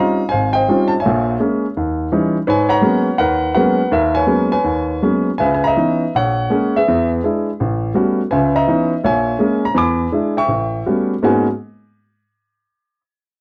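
Swung eighths at 166 BPM in 4/4, loosened by rubato, carry this cool, moody solo jazz fragment in G# minor, played on a warm baby grand piano tuned to A4 = 445 Hz, whose natural, short-sustained, up-front tone spans G#1 to D6 through lush extended harmonies such as C#maj9#11, D#7b9 and G#m11, all captured in a dry, close 1970s-style studio sound.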